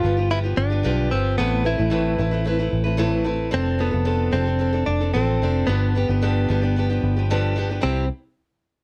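A clean, direct-recorded electric guitar carries the melody from the start, picked and compressed, over a dark, picked steel-string acoustic guitar and a round, punchy, foam-muted vintage bass, all three sitting up front in this sunny, carefree acoustic pop piece cut from a longer work. The straight 4/4 groove moves through G7, Amadd9 and F6 before landing on C at 7.8 seconds, just as the parts finish around 8 seconds. Close, detailed microphones and little reverb give the sound an intimate, dry presence.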